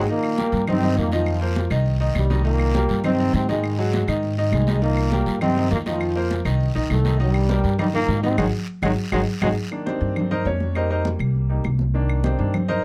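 Sunny and joyful, this brisk salsa excerpt puts a punchy, tight trombone section up front on the melody over a brilliant upright piano with audible action noise and a thumpy pizzicato upright bass, while thin-skinned congas and woody claves sit behind alongside a raspy, close guiro, and after a band accent and drum fill the trombones and guiro drop out at 9.5 seconds so the piano takes a solo.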